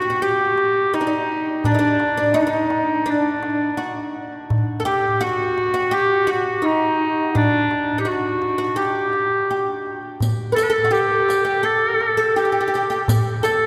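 A vintage-toned clarinet and a woody, fretless oud open this passionate Turkish makam excerpt together, both placed up front. The clarinet carries the melody in a classical solo manner between D4 and B4-41c, while the plectrum-plucked oud, with its double strings, shapes a second line across nearly the same span. A warm clay-shell darbuka with natural skin enters at 0.6 seconds, close and dry, giving the straight 4/4 pulse its grounding. At 10.2 seconds a softly played riq adds a quiet glitter of jingles beneath the ensemble. The performance unfolds in a church or concert hall, where a long, wet cathedral reverb of 6.2 seconds fills the space and lends the moderate tempo a spacious, heartfelt glow.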